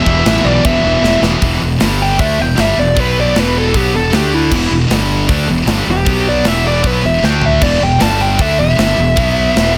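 A lightly reverberant heavy metal excerpt in E minor, dark and relentless at 155 BPM in a straight 4/4, with a dark-toned, high-gain lead guitar carrying the melody throughout. For the first 1.4 seconds a soft, bowed string section holds very quiet sustained chords alongside a barely audible, double-tracked sludgy guitar riff, before a drum fill ushers in the lead solo. Two picked rhythm guitars, one bright and heavy, the other scooped and set further back, drive the riff over a growly, up-front fuzz bass and a tight, airy drum kit with bright cymbals and a second fill at 7.2 seconds.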